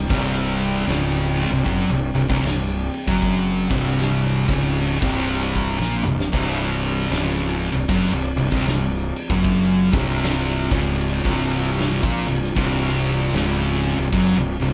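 This ominous, hypnotic stoner and doom metal excerpt opens on a C5 chord. Two thick fuzz guitars, a fuzz fingered electric bass and a deep rumbling drone all sound from the very start, and a big rock drum kit joins at 0.1 seconds. The music moves at a slow 77 BPM in 4/4 with a swung eighth-note feel. The twin distorted guitars play picked riffs in a low register, one dark and set in the background, the other warmer, while the overdriven bass sits up front with a direct, amped fuzz tone. Further back in the mix, the drone holds sustained chords in a higher register, its vintage, wave-folded, warbling sound carrying a slow attack, long release and built-in reverb. The acoustic kit offers a punchy kick, a medium-tuned snare, crash and splash cymbals and toms, with a drum fill from 5.6 to 6.3 seconds, and the band sounds as though it is playing live together in one room under light reverb.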